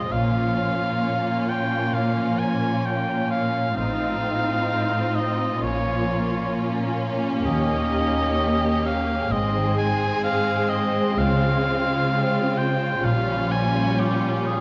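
The rhythm moves with a rubato feel at a slow 65 BPM in 4/4, giving this solemn, elegiac classical excerpt a freely breathing pulse. A violin section, set in the background with a soft attack and smooth top, carries the melody, while a second, more focused and distant violin section and an up-front solo cor anglais, shaded with light vibrato, each trace a second line. A lush viola section supplies even accompaniment, and a bright, ringing concert harp plays arpeggios from the background. Cellos with expressive vibrato anchor the bass alongside a distant double bass section that enters at 0.1 s and stops at 13.9 s. The harmony moves through Bbm, F7/A, Eb7, Ab and Dbmaj7 before settling on Gm7b5/Bb, all heard within a moderate scoring stage reverb.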